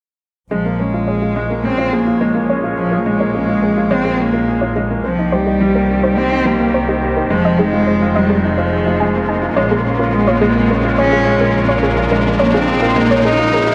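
Intimate and cinematic, this piano and strings electronica fragment from a longer piece builds steadily, with a dark, bowed solo cello singing the melody up front over a woody upright piano riff and a bowed double bass section holding the low end. A veiled, con sordino string quartet sustains chords in the background and a soft, round synth pluck with chorus and tape echo spins arpeggios, both passing through filter sweeps. An electronic riser joins at 6.6 s, and a lush hall reverb wraps the whole in a cinematic glow.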